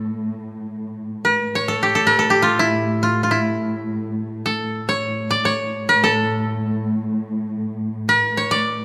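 In a straight 6/8 at 69 BPM counted in dotted quarters, this passionate, stately Persian fragment in A dastgah homayun places a dry, woody, fingerpicked koto melody between E4 and D5 over a dark, bowed cello section holding a sul tasto drone on A2 with vibrato, both parts up front and sounding for the full 8.8 seconds in a moderate recital-hall reverb.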